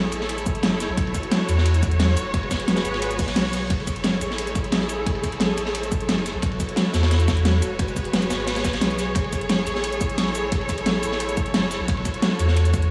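Dark, bowed chamber strings with vibrato hold sidechain-pumped chords over a round sine sub bass from the very start of this dreamy, soulful liquid drum and bass excerpt, joined at 0.1 s by a gritty breakbeat kit with dark, high-passed cymbals and an overdriven pop kit with a fat snare and metallic hats, then at 0.5 s by a punchy overdriven electronic kick, the whole mix soaked in church reverb.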